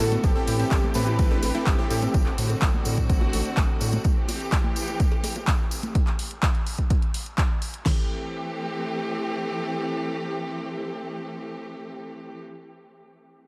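Emotional and bittersweet, this progressive house excerpt moves at 126 BPM in a straight 4/4, set in A dorian and cut from a longer piece. It opens in the drop, where a thick, warbling unison lead with vibrato carries the melody, a soft round pluck ripples through chorused arpeggios in the background, and a punchy, bright supersaw stab sits behind them, all three pumping with the sidechain and trailing delay before falling away at 2.1 seconds. Underneath, a round analog bass holds the low end until 4.0 seconds, while a clear, focused studio string section sustains bowed chords through the whole passage, moving from C6/A to D7/A and settling on Am7. The drums come from two overdriven electronic kits: an up-front deep house kit with a punchy kick and fat snare, and a second house kit of handclaps and hi-hat re-recorded in a large room. Very quiet cowbell, congas and bongos played with soft hands, plus a jingly tambourine in the background, add close, dry acoustic colour until 5.9 seconds. 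A moderate cathedral reverb soaks the mix in a dreamy haze, leaving the strings alone to carry the final seconds.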